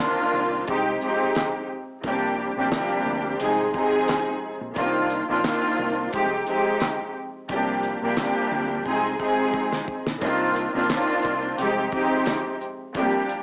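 Tough and dark, this boom-bap hip-hop excerpt in C minor at 88 BPM sets a veiled, muted string section up front over a cloth-damped, thuddy drum kit with a fat snare, tight kick, handclaps, hi-hat and shaker, a round, deep dub fingered bass sitting in the background from 0.3 seconds, a drum fill at 8.9 seconds and a faint jingly tambourine at 10.9 seconds, all wrapped in cassette grit, vinyl crackle and small-room ambience as Cm11, Fm9/C, Gm7 and Ab6/C chords cycle.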